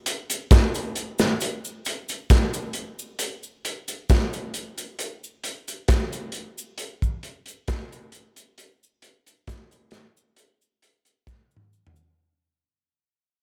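A crunchy breakbeat drum kit sets down a straight 4/4 reggae groove at an unhurried pace, its kick, snare, hi-hat and toms anchoring this serious, meditative piece cut from a longer work. The kit sits up front with a dark, gritty, saturated character and a rolled-off top, the tight kick and medium-tuned snare sounding smooth and warm in a small acoustic room. Behind it, a cabasa stays in the background, its texture blending egg shaker and group handclap colours. Light reverb surrounds the parts as the passage fades out across its full length. A drum fill arrives at 11.3 seconds and runs to the close at 12.2 seconds.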